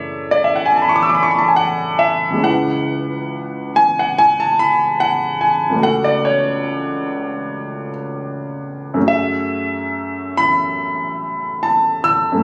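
The rhythm moves freely in a rubato 4/4, drifting between 64 and 77 BPM, so the pulse feels elastic. This is impressionist classical solo piano with a dreamy, hazy mood, and the short passage is cut from a longer piece. A concert grand plays alone throughout, reaching from F#1 up to E6, with deep bass, an intimate, natural character and audible action noise that keeps it close and up front. The harmony glides from F#m7 to C#m7 at 2.5 seconds, then A6/C# at 5.8 seconds, and settles on F#m9 at 9.1 seconds. The sound is that of a phone recording in the room, compressed and washed in a light, club-like reverb that adds to the soft-focus atmosphere.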